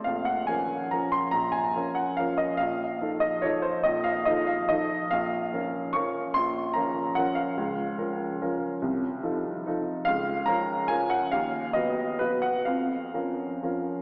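Classical piano waltz in Bb minor, elegant and bittersweet, where a solo upright piano with a woody, polished, up-front tone moves in a rubato 3/4 between 123 and 156 BPM through chords such as Bbm, F7/Bb and B/D#, its sound bathed in a long church reverb and filtered to resemble an AM radio broadcast in this 14-second cut from a longer piece.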